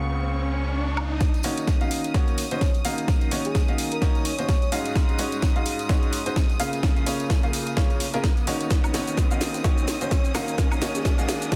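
A dense, heavily limited mix with light reverb carries this bittersweet, soulful piano house cut at 128 BPM with a swung 16th feel, where a woody, brilliant upright piano riff with audible action noise pumps up front over Db6 and Ab7sus4 chords, a punchy fingered electric bass sounds only until 1.2 s, a garage kit with a cracking snare, hi-hat, shaker and woodblock enters at 1.0 s, and an overdriven analog kick arrives at 1.2 s alongside a very quiet tambourine, a background riser, a dark sul tasto violin section holding soft-edged chords, and an airy, dreamy lead with chorus and delay floating in at 2.5 s.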